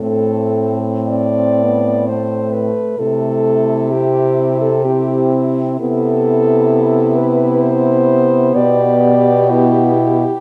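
A solemn, melancholic A minor passage for horn quartet opens at once, all four French horns sounding together from 0.0 s in an unhurried 3/4 that breathes with rubato at roughly 52-67 BPM. The lead horn carries the lyrical melody between E4 and D5, its mellow tone given a punchy edge and placed up front. Beneath it, a second horn shapes an inner line with light vibrato, while a third fills out the accompaniment between A3 and C4, its vibrato rounded by a smooth top. A warm-toned horn anchors the bass from A2 to C3, also set forward in the balance. The harmony moves from Am through Am/C and Cmaj7 to G/B, and the dark production with light reverb frames this brief excerpt from a longer classical piece, which ends at 10.4 s.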